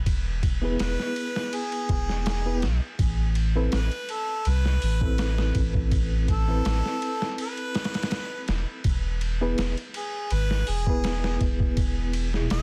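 A distant, roomy harmonica with light vibrato and tape echo carries the melody from 0.8 seconds in this dark, hypnotic trip hop excerpt at 82 BPM in A harmonic minor, set over a deep, round dub sub bass, a gritty, pitched-down boom bap sampler kit with thumpy kick, snare, hi-hat and ride, and a reedy electric piano with fast tremolo, harmonic tremolo and 12-bit sampler grit, moving from E to Amadd9 at 3.0 seconds and back to E, beneath vinyl crackle and a dense, heavily limited master.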